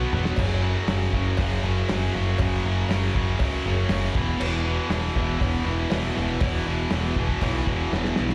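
A tight, bright distorted guitar riff and a growling, round overdriven bass sit up front in this brooding, driving classic rock excerpt, backed by a cloth-damped, thuddy drum kit with dark cymbals that opens and closes with fills, a very quiet metallic cowbell entering at 0.4 seconds, and the light club reverb of a live gig heard through the venue's PA.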